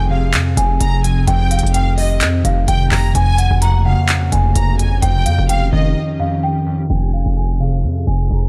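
A dry, low-pass-filtered mix opens this brooding, melancholic trap cut in F minor at 128 BPM with a half-time feel, where a bell-like celesta carries the melody alongside a lush violin section, both treated with delay. Warbling, nostalgic lo-fi synth keys with chorus and phaser provide the accompaniment, a glassy, ethereal FM pad holds sustained chords in the background, and an aggressive, heavy distorted 808-style bass sits up front in the low end, while a crisp electronic trap kit of handclaps and hi-hats drives the groove. A break arrives at 6.0 seconds, and from 6.9 seconds a filter sweep carries the closing section back to the F minor chord.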